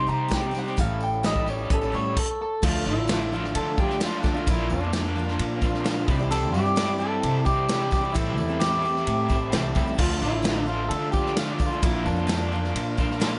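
Wistful and reflective, this folk and heartland rock excerpt opens with a twangy, slightly broken-up electric guitar solo through a small old amp with digital delay that runs until 2.6 seconds, broken by a stop from 2.2 seconds, over picked jumbo acoustic guitar in the background, a double-tracked crunchy overdriven riff with harmonic tremolo, growly pizzicato upright bass, a punchy up-front country drum kit, a jingly tambourine and a very quiet tonewheel organ with key click and slow rotary speaker, all in a light reverb.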